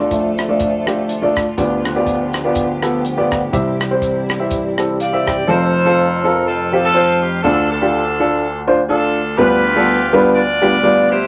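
A fat, percussive tonewheel organ takes a solo from the very start, its slow rotary speaker and chorus vibrato adding movement, while a natural, up-front baby grand piano and a dark, sul tasto string section sit beneath it in this hopeful, soulful uptempo gospel piece with a swung feel. A tight funk drum kit with a dry, airy sound plays hi-hat, kick and rim click until 5.4 seconds, and the organ's key click and third harmonic percussion give its chords a clean edge. The piano slips in a short fill just before the strings drop out at 5.5 seconds, and a bright, vintage saxophone section enters with the melody at 5.0 seconds. From there the horns carry the tune in a pop-style ensemble voice over the piano's accompaniment, moving through chords such as F, Dm and G7/D. Moderate studio reverb gives the recording a modest sense of space, and the excerpt is cut from a longer piece.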